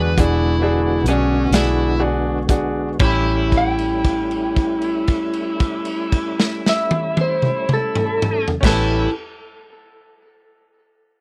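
A slightly broken-up electric guitar through a small old amp carries the melody in this soulful, swaggering slow blues fragment in 12/8, joined by a dark, overdriven slide guitar played with fingerpicks, a brilliant grand piano with audible action noise, a clean tonewheel organ holding chords through a slow rotary speaker with chorus vibrato and key click, a round, foam-muted bass and a gritty, punchy garage drum kit with dark cymbals, in a dry, close 1970s-style studio sound as the band slows over the first 3 seconds and moves from E9 to A9 into a held note that lasts until 8.6 seconds.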